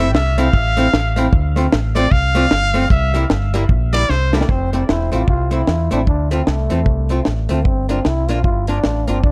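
Joyful and bouncy, this short cut from a longer ska piece swings at 152 BPM in F major. A bright, punchy trumpet with vibrato takes the opening solo over hollow-body archtop guitar, round up-front dub bass and a dry, dark reggae kit with a high-tuned snare and tight kick, and a drum fill at 4.1 seconds hands the lead to a raspy, growling trombone with scooped notes at 4.3 seconds. Dub echo trails the horns and guitar, all set in light reverb, as the chords move from Fmaj7 through Dm7 toward C7 and later Gm7.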